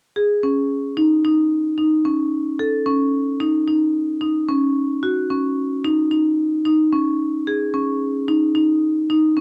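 Set in a straight 9/8 metre, this short progressive instrumental fragment features a lone marimba played with medium hard mallets from 0.2 to 9.4 seconds, sounding intricate and bright. The close-miked, dry instrument sits up front with a full, percussive attack in its middle register. It carries the character of cassette tape and a short booth ambience typical of a home recording.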